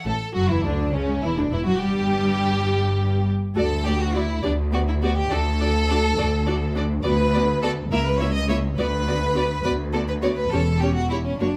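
A lively, graceful fragment of a quick classical-period movement in a straight 6/8 opens with a distant, rich violin section carrying the melody over close, focused violas, joined almost at once by a clear, up-front second violin line, lush vibrato-laden cellos and a smooth double bass section with light vibrato, all bowed in a studio setting touched by light reverb.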